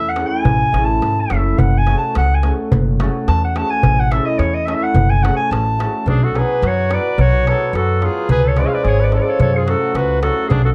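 Balkan folk in a Balkan wedding band style, restless and fiery, in a swung two-beat metre that keeps speeding up throughout this cut from a longer piece. A punchy, up-front clarinet carries the melody as a classical-style solo for the first 6.1 seconds over woody pizzicato upright bass, shimmering hammered cimbalom and a crisp metal-shell darbuka, with plate reverb on the clarinet and cimbalom. At 6.1 seconds the harmony shifts and a clear trumpet joins with a quieter second line treated with plate reverb and tape echo, the whole band heard in a dark, warm small room.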